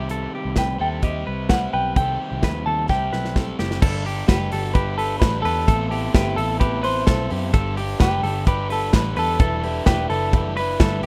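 This excerpt of nostalgic, bright jangly indie pop opens with an overdriven garage guitar accompaniment, twangy, compressed arpeggios from a clean, direct-recorded electric guitar, and a dark, round, foam-muted picked bass, with a punchy studio drum kit joining almost at once. At 0.6 s a warm, hollow-body semi-hollow guitar enters with a clean, fingered melody that carries the tune over a straight 129 BPM in 4/4, centred on G major. The drums sit up front, with a medium-tuned snare, kick, hi-hat, ride and crash cymbals, and a fill from 2.9 s leads into a new section at 3.8 s. There the harmony moves from its opening C minor through Gsus2, Amadd9 and back to Gsus2 before settling on Em7. The excerpt has the rough feel of a home demo mix in a small room.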